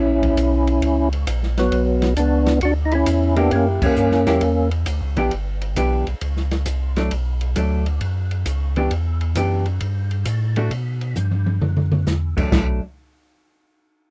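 This dry, close recording has a 1970s studio feel, with little reverb around the players. The fragment is smoky, late-night soul jazz from an organ trio in B minor, swinging at 133 BPM in 4/4. A fat, clean tonewheel organ with third-harmonic percussion, key click, chorus vibrato and a slowly turning rotary speaker carries the melody up front until 4.7 seconds. A second, piping, scooped organ voice with light overdrive holds down the bass line. An acoustic drum kit with a boomy kick, medium-tuned snare and a rolled-off top keeps time from a small room and plays a fill at 11.2 seconds. A dark, compressed hollow-body electric guitar, picked clean, joins with accompaniment at 3.4 seconds as the harmony moves from minor chords through suspended and ninth colours.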